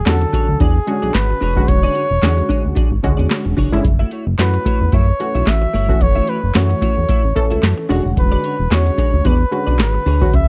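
A breathy flugelhorn and a dark, glossy chorused synth bass open this late-night, slick early-eighties boogie funk excerpt at 111 BPM, the horn carrying a jazz-style solo melody with light vibrato and tape echo while the pulse-wave, up-front bass moves through an E13 to F#m7 and back to E13. A booming analog drum machine with a deep kick, tonal snare, metallic hats and handclaps sits up front with a swung sixteenth feel, and a nasal, punchy polysynth comp with chorus adds funky chords. A clean, picked electric guitar with analog chorus plays a compressed riff low in the mix, all in a dry, close studio sound lifted by digital ambience.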